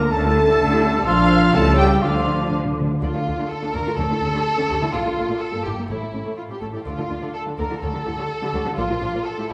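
A quick, straight 2/4 pulse at 125 BPM drives this stormy, restless classical-period orchestral passage in D minor, cut from a longer piece. Dark, con sordino strings carry it throughout: a veiled violin melody joins a lush second violin line, with smooth-topped violas, distant cellos and close double basses beneath, while airy flutes, a roomy cor anglais, a punchy clarinet and a mellow, close-miked horn section colour only the first few seconds. Timpani with medium mallets enter with a fill at 2.0 s and continue to 6.6 s, and a wet scoring-stage reverb surrounds the orchestra.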